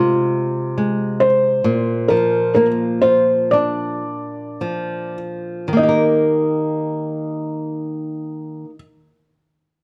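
Tender and innocent, this brief lullaby cut from a longer piece in straight 4/4 eases to a slower pace over its first 5.8 seconds as a felt-muted upright piano sings a soft, intimate melody with a thick, mellow touch above an up-front flamenco guitar whose dark fingerpicked accompaniment carries audible finger squeaks, moving from Fm/C through Bb to settle on Eb at 5.8 seconds, all captured by close, detailed microphones in light reverb.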